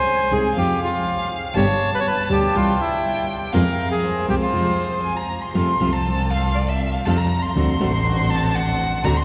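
A reedy, close-miked bandoneon carries the melody of this passionate, melancholic rubato tango until 5.1 s, with a bowed violin adding a second line, expressive with vibrato and portamento. After a short break, the violin takes a solo from 5.5 s as the harmony brightens, over fingerpicked, full-bodied classical nylon-string guitar, a focused bowed double bass with vibrato, and very quiet, floating stabs from a studio string section. The whole excerpt is steeped in a cathedral-like reverb with a layer of vinyl crackle.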